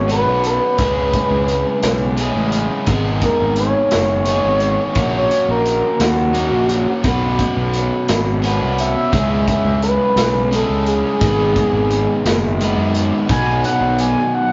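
A rough rehearsal-room recording in a moderate stone-room reverb, with a muffled top end, frames this short cut from a longer indie rock piece. At 58 beats per minute in 6/8, the mood is wistful yet upbeat, moving from Bsus2 and C#m7 through G#m and F#/A# before settling on B. An expressive analog synth lead carries the melody as a solo for the full 14.5 seconds, its smooth sawtooth-and-triangle tone sustained and shaded with vibrato, a moving notch, chorus and slapback echo. Beneath it, a crunchy, double-tracked overdriven guitar sits up front with a picked riff, while a fuzzy fingered electric bass adds a round, punchy low end. A raw garage drum kit of kick, snare and hi-hat enters at 0.1 seconds, sounding saturated and gritty as its small room pumps.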